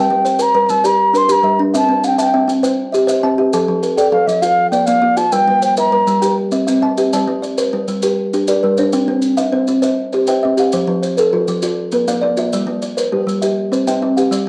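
A home cassette recording in a small booth, with plate reverb on the flute and both kalimbas, captures a rippling, warm southern African traditional piece cut from a longer work: an interlocking mbira-style cycle in 12/8 at 134 BPM in G equiheptatonic, moving through Gm, C, F and Bb. Two up-front kalimbas weave short arpeggios throughout, one dark and smooth with a woody thumbnail pluck, the other airy with a hollow-box thumb pluck, while grainy, distant maracas sound from a large room beginning at 0.3 s. A forward baroque flute carries the melody with a soft attack, vibrato and an unsteady tone until 6.3 s, after which the kalimbas and maracas carry on alone.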